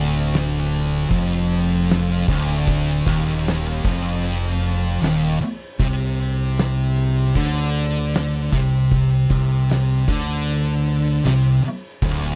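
A straight 4/4 pulse at 77 BPM drives this brooding, sludgy stoner and doom metal passage, cut from a longer piece, as three fuzz guitars grind out a riff moving from D minor to C sus2 at 5.8 seconds. One thick, distorted guitar sits up front with a warm tone while a darker one lurks in the background and a very quiet, double-tracked fuzz layer fills in beneath, all joined by a bright, growly fingered electric bass with tube saturation. An oversized low-tuned acoustic kit enters at 0.3 seconds with a punchy kick, fat snare and dark crash cymbals in a gritty, saturated sound, and the whole is captured as a dry, close 1970s-style studio recording.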